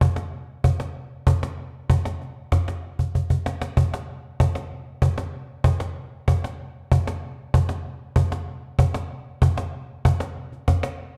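Pastoral and nostalgic in mood, this short folk passage, cut from a longer piece, moves at 64 BPM in a straight 6/8 counted in dotted quarters. A lone cajon carries the whole recording from 0.0 to 11.0 seconds, played with hard hands and sitting close and up front. Its snares give the acoustic box a snappy edge. A brief drum fill arrives between 3.0 and 3.8 seconds. The production is dark and warm, set in a moderate recital hall reverb with a 1.3-second decay that lends the percussion a sense of space.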